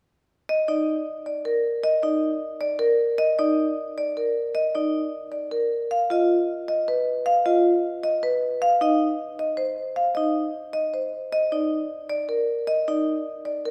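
A marimba with medium-hard mallets opens this urgent, hypnotic piece of minimalist classical pattern music in 7/8 with a full, close-miked, up-front melody. A metallic, ringing vibraphone struck with hard mallets, its motor off, soon joins with bright arpeggios, while a scoring-stage reverb surrounds the pair until the marimba's final note at 13.7 s ends this passage cut from a longer work.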